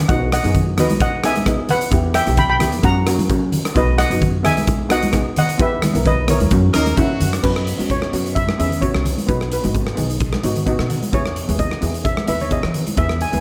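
A lightly swung, bouncy calypso groove opens with bright, thin-skinned congas sitting in the background, joined by a punchy, up-front big rock drum kit with crash, hi-hat, kick and rim click in a pumping room. Two shimmering, metallic double-seconds steel pans struck with hard rubber sticks carry the festive melody and a boxy accompaniment over a woody, growly pizzicato upright bass, with a steel pan fill at 10.2 seconds. A jazz-style horn section with light vibrato and octave doubling adds a brief second line from 6.7 to 7.4 seconds, all set in light reverb in this cut from a longer piece.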